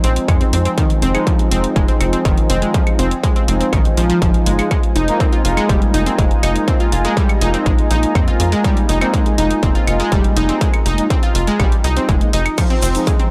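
A dry, gritty hardware recording of hypnotic, driving melodic techno cut from a longer piece, where a distorted, up-front electronic kick arrives at 0.3 s alongside a tight, nasal sawtooth sequencer bass, bright detuned analog pluck arpeggios with chorus and analog delay, bold brassy synth stabs and a deep, moody ambient pad holding an Fm7 chord in the background, all pumping to the sidechain, while an overdriven techno kit of claves, crash and hi-hat ticks along and a grainy tube shaker slips in at 12.6 s.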